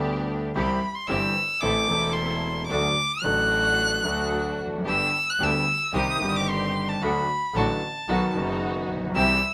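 Tango excerpt at 112 BPM in 4/4 with a rubato, sultry and passionate feel, where an expressive violin with vibrato and portamento sings up front as a second line in the high register from 0.0 to 9.5 seconds over an open, long-sustaining grand piano, dark con sordino string stabs, and an earthy bowed double bass, all in moderate studio reverb through a chord movement of G, C, Am, D, G, Cm, D and B.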